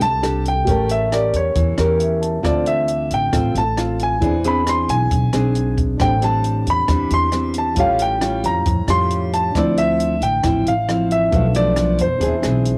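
A concert grand piano carries the up-front melody with a deep, natural tone through this smooth, intimate bossa nova excerpt in A minor at 135 BPM, joined by a fingerpicked nylon-string guitar with audible finger squeak, a second grand piano in the background whose action noise can be heard and which plays a brief fill at 1.8 seconds, a woody pizzicato upright bass and a dry, compact cocktail drum kit of hi-hat, tight kick and rim click, all moving through chords such as Dm7, E7b13 and Am11 in a homespun cassette recording with light reverb.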